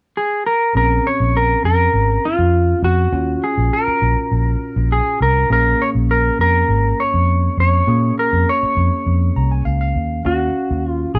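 Straight-eighth soul blues at 101 BPM in Bb minor, this smoky, mournful excerpt from a longer piece opens at 0.2 s with a bright, twangy, clean slide lap steel carrying the melody up front, soon joined by a barky tine electric piano sitting lower in the mix and a round, punchy, foam-muted fingered electric bass, the band playing live in one room with moderate studio reverb as the chords move between Bbm7 and Ebm7 and the electric piano adds a fill at 9.1 s.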